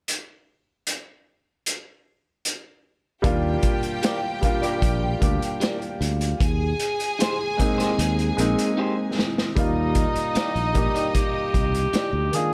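Lush 1970s-style soul at a relaxed 76 BPM in Eb major, this smooth excerpt opens with a punchy, room-pumping vintage drum kit alone. Round fingered bass, an up-front grand piano and a soft-bowed, intimate string section enter at 3.2 seconds, and a slightly broken-up electric guitar riff with chorus joins at 4.0 seconds. After a drum fill, a dark cor anglais takes the melody with light vibrato from 9.6 seconds.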